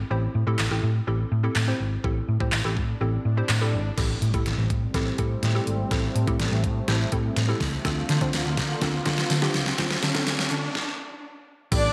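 A roomy, echo-chamber sheen hangs over this confident, driving dance-pop excerpt, where a dark, round hollow-body electric bass and a bouncy square-wave pluck pump against an overdriven, up-front pop drum kit of knocking kick, deep snare, bright hats, handclaps and crash; a very quiet, jingly tambourine flickers in, a smooth, detuned analog pad joins at 4.0 s, a background swell, riser and impact carry the build-up and drum fill to a stop at 10.8 s, and a lush unison supersaw pad swells in at 11.7 s just as the piece cuts off.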